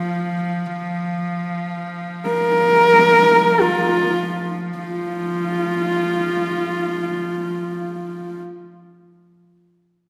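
A dark, woody horsehead fiddle opens this excerpt of Mongolian folk music together with a second horsehead fiddle holding a low drone on F3, both heard from 0.0 seconds in free time. The mood is windswept and vast. The lead fiddle sits up front, carrying a husky, close melody between F4 and Bb4 with vibrato and sliding portamento, while the drone fiddle plays more quietly beneath it with a clear, earthy tone, light vibrato and an airy bow. The pace slows over the opening section until a new section begins at 4.8 seconds, and both fiddles stop at 8.4 seconds. A wet concert hall reverb places the pair further back in a large room, lending the bowed horsehair strings a spacious, lingering tail.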